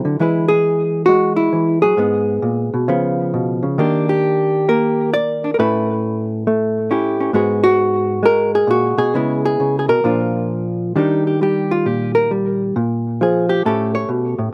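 Solo jazz for hollow-body electric guitar, cut from a longer piece, with a warm, swinging mood at 134 BPM in 4/4, where a swung eighth-note feel loosens into rubato. The guitar carries everything alone, its clean, fingered tone dark and compressed, sitting up front and ranging from G#2 to D5. The harmony drifts through colorful changes such as G#m, C#7, D#maj7 and A9, then settles into minor sevenths before a turn to A#. Around 11.0 seconds a second section opens, where the playing takes on a solo role over Ebmaj7, Bb5 and A7 until the close at 14.5 seconds. The sound is dry, recorded outdoors with little reverb and an absence of room ambience, so every note stays close and direct.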